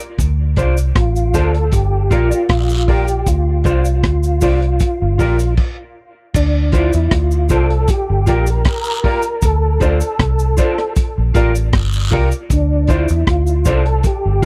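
A laid-back roots reggae groove in 4/4 at 78 BPM rides a crunchy, saturated breakbeat kit with a punchy kick, rim clicks, hi-hat and dark cymbals, joined by cabasa and guiro low in the mix and a round, foam-muted fingered bass sitting up front, all cycling hypnotically between Dm7 and Gm7 in D minor. A mellow, clean electric guitar with ensemble chorus and tape echo and woody upright piano stabs fill the middle, while a dark tonewheel organ carries the melody through chorus vibrato, a slow rotary speaker and tape echo. A brief stop from 5.6 to 6.3 seconds sets off the second section in this dry, close, 1970s-style small-room recording, cut from a longer piece.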